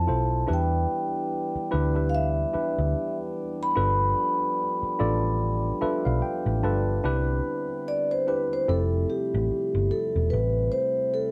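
Ringing soft-mallet vibraphone with slapback echo carries the melody of this romantic, swung soul excerpt and takes a solo from 7.0 seconds, over a worn, slightly out-of-tune tine electric piano that adds a fill at 5.4 seconds, a round, dark picked hollow-body bass, and clean tonewheel organ chords with key click through a stopped rotary speaker, set in a light digital ambience.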